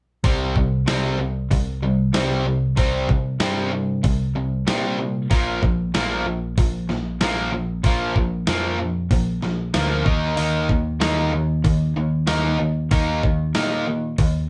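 A straight, driving 4/4 hard rock groove at 95 BPM in C minor carries this menacing cut from a longer piece, where a gritty, compressed, up-front sampler-style drum kit with a thumpy kick and medium-tuned snare sits under two bright, overdriven picked electric guitars playing a riff over C5, Bb5 and Eb5 power chords, the crunchy one up front, alongside a growly, punchy picked electric bass, all captured as a band playing live in one room with light reverb and a dark top end.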